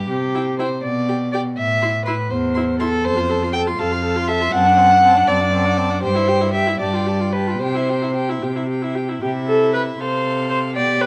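A lilting 6/8 lilt, pushed and pulled with rubato, carries this cheerful, lively excerpt from a quick classical-period movement for string quartet. The first violin, rich and reedy with light vibrato, sings the melody high above the group, though it sits noticeably quieter in the balance than the second violin, whose dark, nasal line stands up front as the loudest voice. The cello, also placed up front, anchors the bass with a full gut-string tone, while the viola joins at 0.3 s with smooth, mellow accompaniment in the middle of the texture. All four players bow in period style, and the harmony moves brightly through major and minor chords, touching a sus2 color before settling home and shifting again near 10.0 s as the opening section begins to repeat at 9.2 s. Close, detailed microphones and a light reverb give the quartet an intimate, clear sound.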